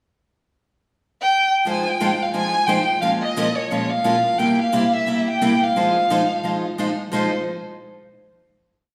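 Swinging and fiery, this short jazz piece opens with a violin at 1.2 seconds, its warm, bowed voice full of vibrato and portamento as it shapes an expressive, motif-based melody in balanced phrases over a minor-key progression. A bright, boxy parlour steel-string guitar joins at 1.7 seconds with picked four-to-the-bar rhythm playing, short and accented on two and four, with finger squeak audible. Both instruments sit up front within the lush reverb of a recital hall before the piece settles on a final chord.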